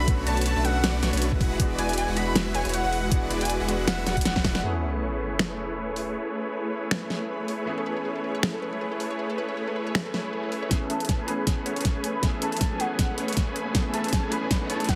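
Playful, euphoric future bass excerpt at 158 BPM in A major with a swung half-time feel, where huge detuned supersaw chords, a bright concert grand piano in the background and a knocking kick with a huge snare, finger snaps and bright hats open on a drop with a saturated sub bass and an airy, dreamy lead until 4.6 seconds, an impact with a sub drop ushers in a shimmering ambient pad and then a punchy unison pluck playing arpeggios, and at 10.7 seconds the kick returns, soon joined by the lead, for a filter-swept build-up with a riser, all set in a digital room and squeezed into a heavily compressed radio sound with sidechain pumping and dub echo on the synths and piano.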